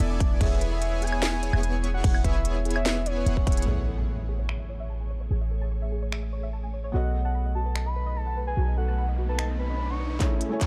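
A dark, warm digital ambience frames this euphoric, lush future bass excerpt in A major at 147 BPM with a half-time feel, opening on a drop where a punchy, overdriven electronic kick sits up front over a deep, boomy 808-style bass and a trap kit of sharp snare, crisp hats, claps, finger snaps, woodblock and crash, while a smooth detuned supersaw riff and a soft, round octave-layered synth lead ride above a background of gentle pluck arpeggios and an ethereal, airy pad, the bass and melodic layers all breathing with sidechain pumping. At 3.7 seconds the kick and supersaw drop out as an impact lands and a felt-muted upright piano enters with intimate, audible action noise and dub echo, moving through Amaj7 to B7 as the lead returns at 6.9 seconds with chorus, phaser and tape echo. A riser and drum fill at 10.2 seconds bring the kick and supersaw back.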